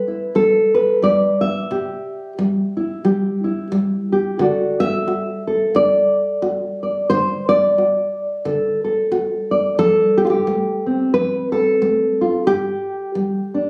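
Captured on a phone in a room with a club-like reverb and compression, this short cut from a longer folk piece puts a solo nylon-string guitar up front, its tone dark, full-bodied and thumb-plucked with a deep classical character. The mood is peaceful and gentle, with a light swing on the eighth notes in 4/4 as the guitar ranges from G2 to E5. The harmony moves from C to D at 4.4 seconds, to F at 9.8 seconds and settles on a G5 at 12.5 seconds.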